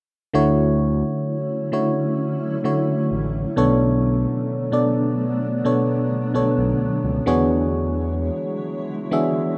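A glassy FM electric piano with a bell-like attack and a warbling chorus sits up front from 0.3 seconds, joined at once by a mellow, smooth synth bass, as this slow, romantic R&B excerpt moves at 65 BPM in D major through Dmaj9, Bm9 and E13 chords. At 1.1 seconds a cloudy, evolving granular pad enters beneath them with a slow attack and its own built-in reverb, blurring the sustained harmony. The bass drops out at 8.3 seconds, and the whole has the dry, rough character of a home demo mix.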